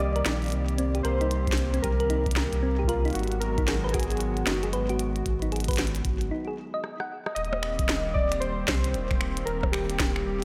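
A warbling, lo-fi synth keys melody drifts over a hollow, flute-like pad, a tine-like thumb-piano pluck and a round sub bass in this glitchy, playful IDM excerpt at 114 BPM with a swung 16th-note feel, where a clicky kit of finger snaps, rim clicks, blips and a tiny snare is joined by a deep analog kick at 1.5 s, a break and drum fill lead from Cm7 and Abm7 to Eb6 at 7.4 s as the pluck drops out, and a lush hall reverb gives it a big arena sound.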